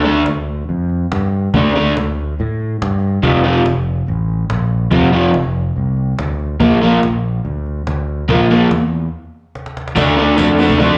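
Gritty and swaggering, this garage rock fragment puts a crunchy, double-tracked overdriven guitar riff up front beside a growling, bright fingered electric bass with its own overdrive, while a woody cajon with faint snares keeps straight time and plays a fill from 9.5 seconds within a break that begins at 9.1 seconds, and a very quiet, jingly tambourine slips in at 10.0 seconds, all heard as a live club gig through the venue's PA onto cassette tape with a small-room reverb.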